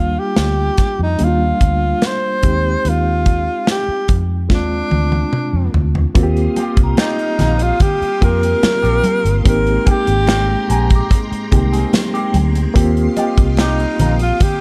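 A dark, lightly reverberant small-room production frames this smooth, lush 1970s-style soul excerpt, led by an intimate, breathy tenor saxophone with vibrato up front. It rides over a barky, lightly overdriven electric piano with fast tremolo, a round, foam-muted fingered bass and a punchy, polished studio drum kit that enters at 0.4 seconds and plays a fill before the second section. At 6.2 seconds the arrangement blooms as a mellow string machine with ensemble chorus holds sustained chords and close, dry congas join, followed at 6.6 seconds by a clean hollow-body electric guitar riff through wah and a delicate, bell-like celesta, both sitting in the background.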